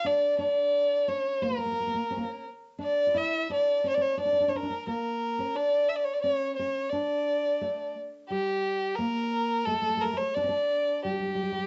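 A single bowed violin sits up front, its rich, nasal tone carrying a smooth melody with vibrato through this soulful, hypnotic Turkish fragment at 87 BPM in a straight 4/4, tuned to A4 = 435 Hz. Beneath it, a fingerpicked nylon-string guitar plays a full-bodied second line at a much lower level, and both instruments carry a cassette tape color. This home cassette recording sits in a small, reverberant room with a muffled top end, and the fragment lasts about 11.7 seconds.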